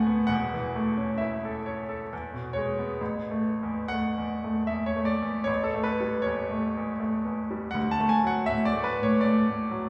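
A bright, polished baby grand sits up front in a wet recital-hall reverb, playing a tender, serene romantic nocturne in A major and 3/4 with rubato at 61-85 BPM, its intimate tone carrying audible action noise across a range from E1 to A5 as the harmony moves from A over E through E, A and A7 to D in this short fragment cut from a longer piece.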